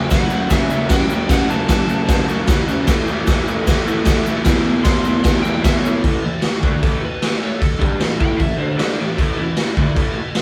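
Swaggering and rowdy, this garage rock cut for a small band moves at 152 BPM in a straight 4/4, centred on A major and caught with light reverb as if the group is playing live in one room. Up front, the raw drum kit lays down a punchy kick, a medium-tuned snare and crash cymbal, its gritty, saturated sound carrying a mid-forward tone and rolled-off top. A double-tracked, overdriven electric guitar drives the riff throughout, picked in a low-to-middle register, while a buzzy vintage combo organ holds very quiet sustained chords beneath it. Further back, an overdriven slide guitar carries the melody with digital delay, breaking off at 2.3 seconds and returning at 4.8 seconds. A grainy egg shaker ticks faintly until 5.9 seconds, and the harmony moves from F#m through A and E before a new section lands on A at 6.0 seconds.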